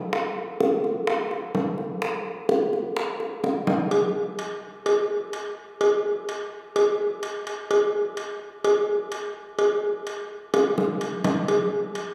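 Bongos and cowbell open this short Latin cut almost at once, carrying a danceable, relaxed groove in a straight four-beat feel. The hand drums sound tight and high-tuned, with an acoustic snap that sits up front even as the generous reverb of a large recital hall lends them a distant quality. A short drum fill at 3.4 seconds leads into a new section at 3.9 seconds, and the percussion keeps the same easygoing pulse from there. Another fill arrives at 10.5 seconds before the passage ends at 12.1 seconds. The long, wet ring of the church-like room surrounds every stroke, giving this lone percussion track an airy, spacious character.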